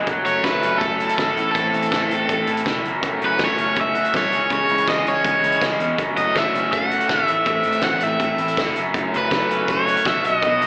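Indie rock at 162 BPM with a carefree, upbeat lift, cut from a longer piece and heard like a live gig through a club PA with an AM radio tint, where a raw, lo-fi garage guitar with spring reverb and a crunchy guitar with subtle chorus and slapback echo set in the background share the riff over a dark, round, foam-muted picked bass and a distant, roomy drum kit with a fat snare and punchy kick entering at 0.1 seconds, while an up-front, compressed overdriven guitar carries the melody from 0.3 seconds across F#m7, Am and C#m changes.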